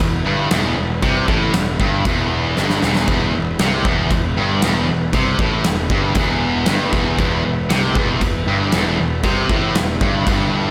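A big arena sound bathed in moderate, lush hall reverb frames this menacing, heavy hard rock excerpt in E minor, moving at 117 BPM in a straight 4/4 and holding on an Em chord. Up front, a punchy acoustic drum kit with a medium-tuned snare, kick and crash cymbals drops a fill at 2.6 seconds and stops at 10.4 seconds. Beside it, a bright, overdriven electric guitar riff sits forward while a scooped, high-gain guitar plays a riff in the background. A growly fuzz bass carries the low end, and a very quiet, gritty tonewheel organ through a rotary speaker holds sustained chords beneath.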